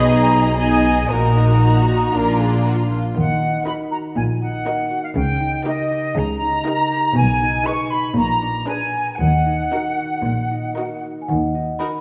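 A cinematic, whimsical film cue in Eb minor with a sneaky, quirky, playful mood, moving at 118 BPM in a straight 4/4. A symphonic violin section carries the melody with a dark, woody, lush tone, bowed sul tasto with vibrato, while a bright, airy flute section sits up front on a second line above it until 11.0 seconds. A distant studio violin section adds another second line in the background, a studio viola section supplies soft-attack accompaniment, and a concert harp rings out fingerpicked arpeggios throughout. Underneath, a studio cello section and a double bass section share the bass, the cellos close and floating, the basses dark and smooth on top. At 11.2 seconds a large celesta enters up front with a bell-like, delicate melody on soft felt hammers as the strings close out. The whole ensemble sits in a wet scoring stage reverb, and the harmony moves through Ebm, Eb7/Db and Bb7b9 before resolving back to Ebm in this short cut from a longer piece.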